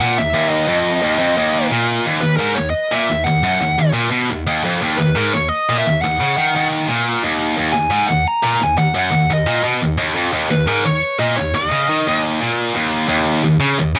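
Metal with a relentless, aggressive drive, this cut from a longer piece sets a bright, double-tracked high-gain guitar riff up front in low register through 14.0 seconds, under a dark, smooth overdriven lead guitar melody carrying cassette tape grit and tape echo until 12.2 seconds, all in a dry home cassette recording.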